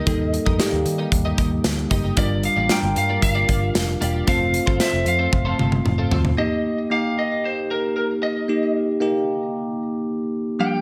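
Romantic and nostalgic, this 1980s-style pop passage is cut from a longer piece and moves in a straight 4/4 over chords of Eb, Gm7 and F before returning to Eb. A lightly driven lead guitar carries the melody up front, its slightly broken-up, compressed tone trailed by delay. A bright, bell-like tine electric piano with phaser supplies the accompaniment throughout. Lower in the mix, a clean, picked twelve-string electric guitar plays a riff through analog chorus and delay, joined by a dark, round, foam-muted fingered bass and a polished, airy modern drum kit with punchy kick, medium-tuned snare, hi-hat, tambourine and toms. A drum fill begins at 5.3 seconds, and around 6.3 seconds the riff guitar, bass and drums drop out, leaving the lead guitar and electric piano alone until 10.8 seconds. Plate and small-room reverb soak the mix in a dreamy haze.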